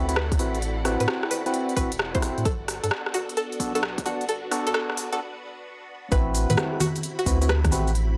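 A hollow, nasal organ stab with a cassette-tape haze sits up front in this moody, skippy two-step UK garage cut at 131 BPM in A dorian, joined by a twangy, bright resonator pluck with tape echo, a thick, saturated sub bass and a punchy layered kick. The garage kit's crisp hats, congas, rim click and shaker swing, while a silky string machine pumps softly in the background over Am69 and Gmaj9 chords and a very quiet, dark bowed string section adds lush vibrato. Filter sweeps on the stab and pluck drive a build-up, the symphonic strings drop out for a break at 5.2 seconds, and the drop lands at 6.1 seconds, all in a dry, gritty hardware sound with light reverb.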